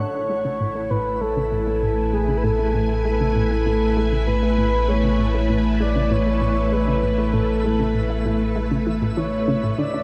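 From the opening moment this cosmic, luminous piece of sequencer-driven space music is already in motion, with a lush vintage string machine holding a sustained chord, a deep sub bass rounded out by tube saturation, and a soft, breathy flute-like lead singing the melody through chorus and delay. Beneath the lead, an analog pluck plays a riff in the low-middle register, its nasal, wave-folded tone snapping in with a fast attack and then decaying, and a filter sweep runs across it throughout. High above, a sparkling granular texture fades in, holding a single shimmering note with its own built-in reverb in the background. The string ensemble and bass sit up front, while the lead's gentle vibrato floats over the mellow, full-bodied chords. A moderate cathedral reverb places the whole piece in a vast, echoing space, and this 10-second excerpt, cut from a longer piece, was captured on cassette tape.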